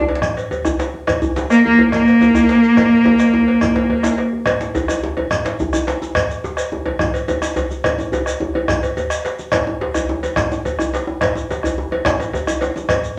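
A rich, bowed solo cello with smooth vibrato sits up front on a single Bb3 from 1.5 to 4.1 seconds, over an earthy, powerful West African drum ensemble in 12/8 at 142 BPM, where two djembes (one tight and cracking in the background, the other medium-tuned), a round vintage bombo, a metallic cowbell and a grainy, mellow shekere drive through a drum fill from 2.8 to 4.5 seconds in a club reverb.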